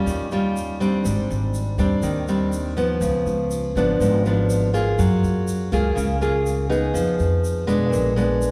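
Bossa nova at 122 BPM in 4/4 with a straight feel, this short cut from a longer piece has an intimate, wistful mood. A fingerpicked nylon-string guitar sits up front, its fresh strings giving a full-bodied, classical tone as it carries the accompaniment from Ab2 to Ab4. Beneath it, a pizzicato upright bass with steel strings adds a woody, warm low line between Ab1 and Cb3, while a grainy, bright egg shaker enters at 0.1 s with a small-room character. The harmony moves through Eb9, Abmaj7#11, Db7b9, Gbmaj9 and Fm7b5 before landing on Bb7b9 at 7.9 s. A wet scoring-stage reverb with a 1.7-second tail places the trio in a church or concert hall, lending the 8.5-second passage a spacious air.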